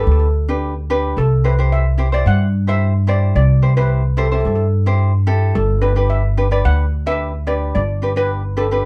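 Calypso at 109 BPM in G major, tuned to A4 = 439 Hz, in a carefree, bouncy short clip where a shimmering, metallic steel pan struck with hard rubber sticks carries the melody, a light fingerpicked ukulele picks out G, C and back to G underneath, and a woody pizzicato upright bass sits up front as the loudest part, all set in a dark production with light reverb.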